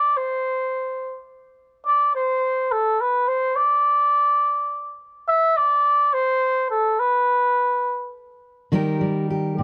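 Set in a steady, straight 6/8 metre, this short folk fragment moves with an unhurried, nostalgic yet uplifting air. A cup-muted trumpet carries the melody in its middle register, sounding mellow and veiled, played solo and up front in a classical style with a slightly distant, roomy quality. It plays unaccompanied until 8.7 seconds, when a fingerpicked steel-string acoustic guitar enters on an Eb chord, adding a full-bodied, dreadnought-style accompaniment that is also placed up front. The guitar is heard only briefly before the clip ends at 9.6 seconds, since it is cut from a longer piece. The sound is dry and close, like a 1970s-style studio recording in a small room.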